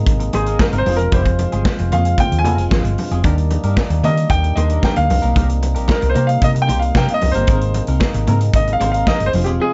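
Disco with a glamorous, joyful feel, cut from a longer piece, where a clear, intimate grand piano with audible action noise takes the solo melody up front over chords moving from Abadd9 through Fm, Ebmaj7 and Cm7. A dark, round hollow-body bass and a punchy acoustic drum kit with a medium-tuned snare sit forward in the mix, while low-tuned, ringing congas played with soft hands stay in the background. A lightly overdriven tonewheel organ with key click holds sustained chords alongside a twangy, compressed clean electric guitar with subtle chorus, all in a dry sound with a softened top end.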